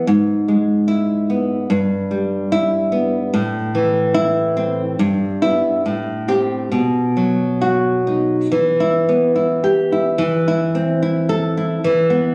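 A fingerpicked nylon-string guitar plays alone and up front throughout this passionate, melancholic romantic classical piece in E minor, moving with rubato at 66-75 BPM in 2/4, its full-bodied tone and audible finger squeaks set in concert-hall reverb and captured on a phone in the room with added club reverb and compression, as the passage shifts into a new section at 8.5 seconds and ends on an E5 chord at 11.8 seconds, cut from a longer work.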